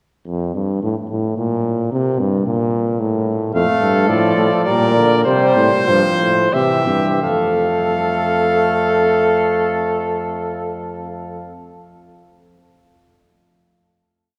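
A mellow euphonium opens this short classical canzona alone at 0.3 seconds, its close, up-front voice carrying a soft attack and light vibrato in 3/4 time in F major. At 3.5 seconds the flugelhorn and trombone enter, both sounding distant and roomy with light vibrato, and the cornet joins at 3.6 seconds as the melody, its tone warm and soft-edged and placed close and forward. Each of the four brass instruments carries its own line of imitative counterpoint, giving the lively, joyful piece a conversational, polyphonic texture over the euphonium's bass. The tempo, moving between 83 and 112 BPM, slows down from 2.7 to 7.2 seconds, where the exposition gives way to a sustained final F major chord that rings out to the end. A wet church reverb with a long decay surrounds the ensemble, adding a spacious, resonant glow.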